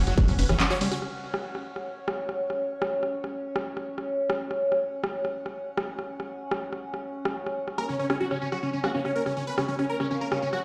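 A huge, detuned supersaw melody opens this hypnotic, driving psychedelic trance excerpt at 142 BPM in F# major, its phaser, dub echo and sidechain pumping returning at 7.8 seconds, while an overtone-sweeping drone holds chorused, phased chords throughout, a punchy saturated sequencer bass and a squelchy, screaming acid riff flash through the opening drop, a techno kit of handclaps, hats, ride and rim clicks drives on in a large, reverberant room, and a wobbling formant-filtered bass hovers in the background from 8.8 seconds.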